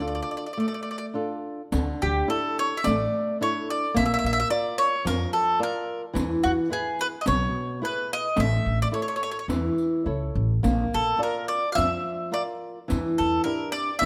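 Passionate and wistful, this short excerpt of an Italian folk serenade moves with a loose, rubato feel in 4/4. An up-front mandolin carries the melody, its picked double strings giving a round, warm tone in the upper middle register. Also up front, a flamenco guitar fingerpicks a dark accompaniment, while a pizzicato upright bass with steel strings adds a woody low line. At 1.7 seconds a riq joins, its bright jingles sounding distant, as if from a large room. The harmony travels from Dm through Dsus2, Bb, E and A, back to Bb, and settles on Em7b5, all captured by close, detailed microphones with light reverb.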